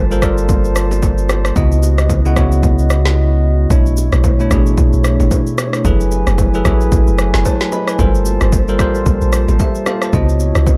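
Swung sixteenths at 112 BPM drive this hypnotic, late-night amapiano cut from a longer piece, where a punchy, up-front deep house kit with woody snare, rim click and shaker sits over faint soft-handed congas and bongos, while a bell-like tine electric piano and a glassy, ethereal glass harmonica pumping against the sidechain carry dark minor eleventh chords; a round, nasal analog bass holds the low end until a brief silent gap at 3.2 seconds, and a deep, percussive log drum bass takes over from 3.7 seconds in a close, dry production.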